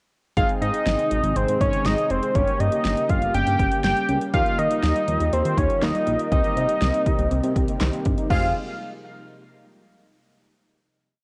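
Driving and melancholic, this short synth-pop piece in F minor at 121 BPM puts a fat, vibrato-tinged sawtooth lead up front over bold, detuned synth brass chords, a silky string-machine pad that enters at 0.8 s, a very quiet, dark pluck in rising and falling sixteenth-note arpeggios, a glossy chorused synth bass and a punchy, overdriven deep house drum-machine beat, set in moderate spring reverb with a home cassette recording character before settling on a final Fm9 chord at 8.3 s.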